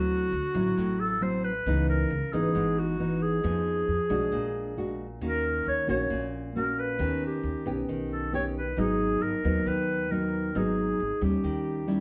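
Melancholic and wistful, this bossa nova excerpt moves at 135 BPM in G# minor, with a breathy, whispered clarinet carrying the melody up front in an intimate jazz style, its soft attack, light vibrato and scooped notes giving it a vintage feel. A thumb-plucked nylon-string guitar, classical in tone and marked by finger squeak, sits close beside it with rich chords such as D9, C#m9 and G#m7, while a woody, thumpy pizzicato upright bass on gut strings sits lower in the mix. The trio plays live together in one room, bathed in moderate studio reverb that keeps the 12-second passage cozy and close.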